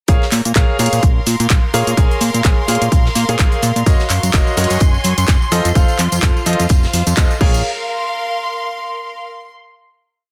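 Energetic yet bittersweet, this short piano house piece drops straight into a full groove from its opening moments and rides it to a brief final note. A bright, brilliant concert grand drives a rhythmic chord riff in close voicing, pumping against the kick and trailed by tape echo. Beneath it, a fat analog bass with a saturated, wave-folded edge plays an octave-jumping line, while a punchy electronic kick holds a four-on-the-floor pulse up front alongside programmed hats, claps, cabasa and crash, and a very quiet looped breakbeat with a high-tuned snare. A clear symphonic string section carries slowly shifting chords throughout, and at 3.9 seconds a rich, distant violin section adds a held high note as a tambourine joins in the background. The band hits an accent at 7.2 seconds before the strings sustain alone into the final note, and the whole mix sounds dense and heavily limited, with light reverb and studio ambience.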